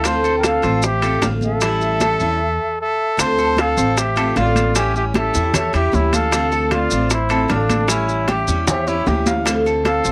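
A breathy, close-miked trumpet leads up front with a whispered, intimate melody in D minor, while a distant, airy flute carries a second line in the background. This is Cuban son with a guajira lilt at 153 BPM in a straight 4/4, sultry and nostalgic, cycling between Dm9 and A7 before settling on Dm7 near the end. Beneath the melody lines, a full-bodied steel-string acoustic guitar picks out the accompaniment with audible finger squeak, and a metallic, double-strung tres spins bright arpeggios in the background, with a woody pizzicato upright bass anchoring the low end. The percussion blends damped, high-tuned congas, low-tuned bongos played with soft hands from 0.1 s, grainy maracas and ringing, band-limited metal-shell timbales. The band drops out for a stop at 2.4 s, and a drum fill arrives at 8.7 s before the final chord. A small room's moderate reverb and the character of a home cassette recording give this fragment of a longer piece a homespun, vintage feel.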